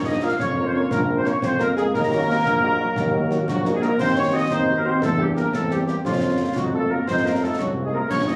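A steady, straight 6/8 pulse at 117 BPM drives this stern, resolute military-style wind band march in Bb minor, where a distant, very quiet trumpet section carries the melody over a warm tuba bass, dark, roomy trombone chords, a soft French horn accompaniment, and second lines from a woodwind section, a background euphonium and a pure, vibrato-laden flute ensemble, with concert snare, bass drum and dark clash cymbals joining at 0.4 seconds, all heard through a phone recording's club-like reverb and compression.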